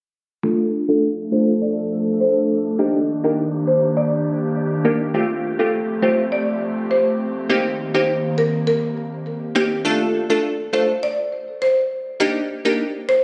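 A buzzing, woody marimba played with medium mallets carries the melody from 0.9 s in this bouncy, tough dancehall fragment at 102 BPM in D phrygian, backed by crisp, wave-folded wavetable chord stabs and an airy, breathy, warbling pad with chorus that holds sustained chords until 9.8 s, moving through Dm, Ebmaj7, Fadd9 and Cm7 while a filter sweep runs through the opening section, the mix sitting in a lush hall reverb and captured on a phone in the room with compression.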